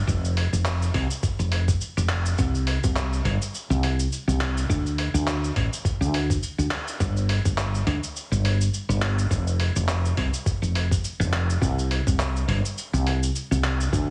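A lightly swung groove of handclaps, hi-hat and shaker from a gritty, tape-warm soul sampler kit, anchored by a thumpy electronic kick, carries this smooth, sunny sunset chillout fragment, while a dark, round, hollow-toned fretless electric bass sits up front in the low register, all under a light reverb and a heavily compressed, radio-like sheen with a hint of studio ambience.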